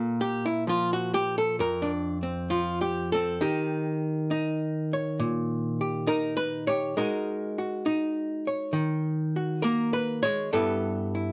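Closely miked with light reverb and fine detail, this short 11.3-second fragment of sophisticated solo jazz features an up-front, miked and amplified electric archtop guitar with a dark, clean, compressed hollow-body tone, picked at a rubato 67 BPM in 4/4 with a swung eighth-note feel as it moves through A#sus2, D#7, G#9sus4 and G69 across a range from E#2 to C#5.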